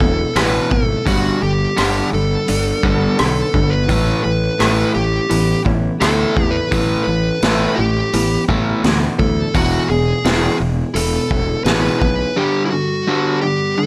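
A smooth, overdriven lead guitar sits up front, picking a bittersweet melody between E4 and B4 over a restless bed of alternative rock in the quiet-loud mould. Beneath it, a picked, overdriven electric guitar drives a low riff while a fingerpicked steel-string dreadnought, full-bodied with fresh strings, ripples arpeggios in the background. A growly, fuzz-soaked fingered bass and a raw garage drum kit, gritty and saturated with a boomy kick, a medium-tuned snare, hi-hat and rim click, carry the groove in a straight 4/4 until they drop away at 12.2 seconds. The harmony moves from E to Gadd9 and Asus2 before circling back through E and Gadd9, and the guitars ring on alone to the cut at 13.9 seconds. Light reverb sits over the mix, with the drums captured in a small room, mid-forward and rolled off at the top.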